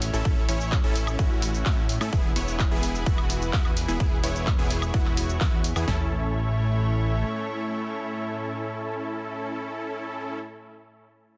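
Dense, heavily limited and nearly dry, this anthemic, uplifting festival progressive house excerpt opens on a drop where a punchy, overdriven big-room kit with up-front kick and snare and a house kit of bright hats, handclaps, shaker and woodblock play alongside a fat, detuned analog bass that pumps under the sidechain, while a punchy supersaw stab riff with tape echo and a lush, chorused unison pad carry on after the drums stop near 6.0 seconds and the bass drops out at 7.2 seconds.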